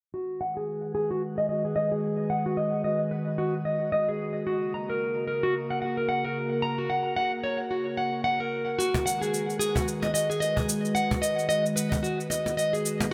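An echo-heavy mix soaked in a wet spring reverb frames this earthy, warm organic downtempo excerpt at 111 BPM in G# minor, swung on the sixteenths and moving from G#m7 to F# and back. A bright, fingerpicked nylon-string guitar plays up-front classical arpeggios with audible finger squeak, carried by a filter sweep, tape echo and shimmer reverb, over a warbling, detuned, lo-fi pad of dark, nostalgic sustained chords with chorus and a slow attack. At 8.8 seconds a produced, electronic cabasa enters, soon joined by a snappy, saturated cajon struck with hard hands.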